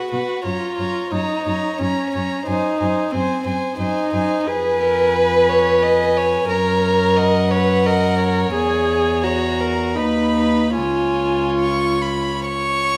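An up-front, dark viola with intimate vibrato carries the accompaniment in this lyrical, tender romantic movement for string quartet in F# major, in 3/4 at a rubato 66-93 BPM, beneath a first violin melody with light vibrato and an airy bow, a floating, pure second violin line and a rich, distant cello bass, each played sul tasto with a soft attack in a recital hall's moderate reverb.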